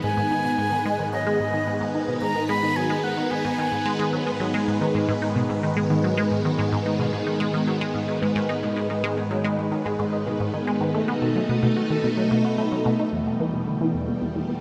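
Ambient, sequencer-driven space music in G# minor at 110 BPM, hypnotic and expansive, where a bright, swirling vintage string machine holds up-front chords through chorus and phaser while a juicy, squelchy ring-modulated blip pluck runs its riff with phaser and delay, a breathy, close-miked concert flute sings a brief delayed melody until 4.1 seconds, a ringing fingerpicked Celtic harp enters at 4.4 seconds with background arpeggios, and the whole passage floats in a huge, wet reverb as the chords move from G#m to B7 before turning to Em at 13.1 seconds.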